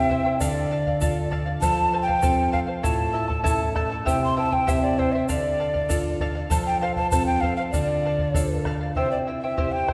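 A wet concert-hall reverb with a two-second tail places this short Andean folk piece further back in the room, though the quena itself is close-miked. In D minor at 98 BPM in a straight 2/4, it feels wistful and melancholic. The cane quena carries the melody with a breathy, mellow tone, gentle vibrato, a soft attack and a hollow voice. Beneath it, the fingerpicked charango adds a shimmering layer from its doubled strings, some of them octave-doubled. The classical nylon-string guitar is bright and full-bodied, with fresh strings and an audible finger squeak. A round, dry bombo anchors the beat, a grainy egg shaker sits low in the mix from 0.4 to 8.5 seconds, and the harmony moves through Dm, F, A and C before the cut from a longer piece.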